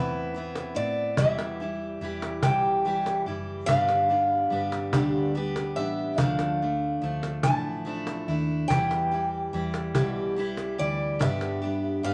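Melancholic and intimate, this short slice of acoustic folk moves in a slow, straight 6/8 at 48 BPM, with a woody, boxy archtop guitar on old strings picking the melody high above a bright, up-front steel-string guitar's chords. A dark, round hollow-body electric bass sits beneath them, and a snappy cajon played with soft hands enters at 0.6 s, all in a club reverb as the harmony drifts from Amadd9 through Em, G and Dmadd9.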